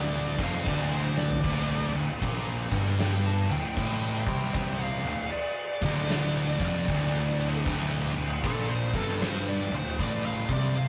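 A swung 4/4 groove drags along at a crawling pace in this ominous, sludgy stretch of stoner and doom metal, cut from a longer piece and built on a single D minor chord. The oversized, low-tuned acoustic drum kit enters at 0.4 seconds and sits up front, its punchy kick, medium-tuned snare, toms and dark crash and splash cymbals gritty and saturated inside a big, pumping room, with a brief fill at 1.1 seconds. Beneath it, three thick fuzz guitars pick a low riff: one dark and in the background, one mellow and very quiet, and one bright and double-tracked. A fuzz picked electric bass sits an octave below the riff, direct and amped with overdrive and tube saturation that give it a growly, biting edge. Over the top, a compressed, shadowy fuzz lead guitar solos through the whole stretch, coloured by wah and distortion. The rough rehearsal-room recording carries light reverb and a warm, saturated glow.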